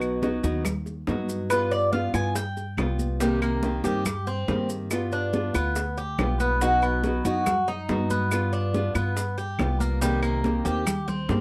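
A straight 4/4 pulse at 141 BPM drives this danceable Cuban son and guajira excerpt, set by woody claves, soft-handed, high-tuned congas in the background, grainy maracas and tight, saturated bongos that join at 0.2 s. Up front, a boxy, fingerpicked nylon-string guitar and a dark, thumpy gut-string upright bass carry chords moving between B, G7 and Cm7. The warm, metallic, double-strung Cuban tres enters at 1.5 s with picked arpeggios, all captured by close, detailed microphones with light reverb.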